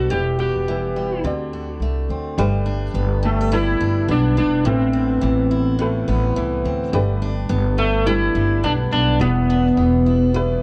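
A relaxed 4/4 pulse at 106 BPM with a swung sixteenth-note feel carries this heartfelt, easy-going acoustic pop passage in G major, cut from a longer piece and moving from Em and D7 into Gadd9 and Amadd9 chords. Up front, a slightly broken-up electric slide guitar played with fingerpicks sings the melody through a digital delay, next to a thumpy, woody pizzicato upright bass, while a picked steel-string acoustic guitar adds accompaniment with audible finger squeak. A mellow, boxy upright piano sits in the background, slightly detuned with short sustain, and the whole recording carries moderate studio reverb and the warbling pitch drift of worn cassette tape.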